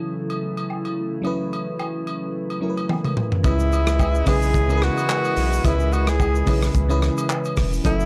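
A dry, gritty small-room recording carries this mellow, smooth afrobeats excerpt in 4/4 with a light sixteenth-note swing, opening on F#m7 with a glassy, bell-like FM electric piano with chorus, an ethereal FM pad with ensemble chorus and reverb in the background, and compressed agogo bells and woodblock from 0.3 seconds. A crunchy, dark breakbeat kit with a tight kick, handclaps, hi-hat, rim click, shaker and toms plays a fill at 2.9 seconds. At 3.4 seconds the harmony shifts to C#m7 as a deep, thick sub bass arrives up front, and just after, a breathy tenor saxophone takes a jazz-style solo with vibrato, scooped notes and tape echo, backed by a pop-style horn section with its own tape echo.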